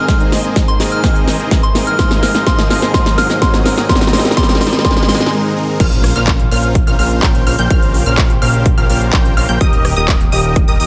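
A straight 4/4 pulse at 126 BPM drives this triumphant, euphoric festival progressive house passage, where a punchy, up-front electronic kick, a big-room dance kit with huge snare and crisp hats, a thick detuned supersaw riff with sidechain pumping, a very quiet airy unison pad, background riser and impact effects, a soft FM synth bell melody and a clear concert grand piano accompaniment build toward the drop at 5.8 seconds, when a fat analog bass and a full-bodied, wave-folded unison pluck arpeggio enter over chords moving from Bbmadd9 to Eb.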